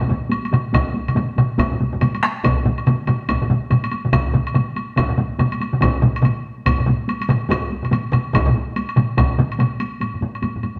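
The loudest taiko ensemble, struck with hard sticks and heard close and dry, drives this ceremonial Japanese traditional excerpt at 142 BPM in 4/4 with a swung sixteenth feel, alongside a solo taiko played with heavy sticks in a small room, a background taiko ensemble, another taiko ensemble in a live room entering at 0.7 seconds, and a woody woodblock from 0.3 seconds, all ringing through a wet stone-room reverb as the band plays live together.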